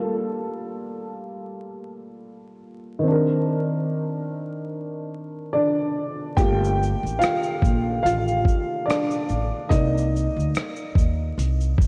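Lo-fi hip hop with a melancholic, reflective mood, this excerpt from a longer piece moves at an unhurried, lightly swung pace. A dark, worn upright piano opens alone, mellow and slightly detuned, with intimate action noise, cassette tape coloring and a filter sweep over its first 6.4 seconds as it moves between Gm9 and Cm9. At 6.4 seconds the piano takes a solo, and an up-front upright bass enters with a woody, gut-string tone alongside a gritty, compressed sampler-style kit of thumpy kick, hi-hat, rim click and shaker, recorded in a small room. The whole mix is dreamy and soaked in a lush hall reverb, with vinyl crackle adding a vintage, dusty haze.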